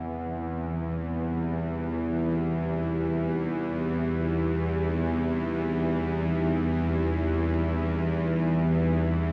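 A cavernous cathedral reverb with a long 5.4-second tail swallows this short, unsettling stretch of dark ambient drone, cut from a longer piece and drifting in free time over a C minor chord. Up front, a bowed-like drone sits low between E2 and E3, its string-like, tense sawtooth voice thickened by detuned unison, a noise layer and vibrato, with a slow attack, long release and its own built-in reverb giving it a bright edge. Behind it, a deep, moody pad fades in from 0.5 seconds, holding sustained chords between C4 and C5 through detuned sawtooth and sine layers with a sub octave, softened by chorus and reverb into a dark haze. Very faintly, a quartz singing bowl rings a pure F#5 sounded with a suede striker, its slow beating adding a meditative shimmer that only deepens the ominous mood.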